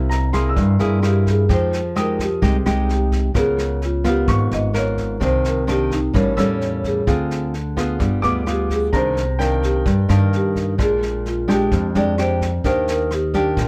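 Smooth and wistful, this bossa nova excerpt sets a mellow, round marimba with soft mallets carrying the melody through a plate reverb, over a dark, fingerpicked nylon-string guitar that sits up front with audible finger squeak and a woody, thumpy pizzicato upright bass. A clear baby grand piano with short sustain adds high accompaniment until 12.7 seconds, while a small-room brush kit supplies boomy kick, rim click and a medium-tuned snare. Lush chords such as Fm9, A7b9 and Bb13 give the harmony its bittersweet color, all held in light reverb.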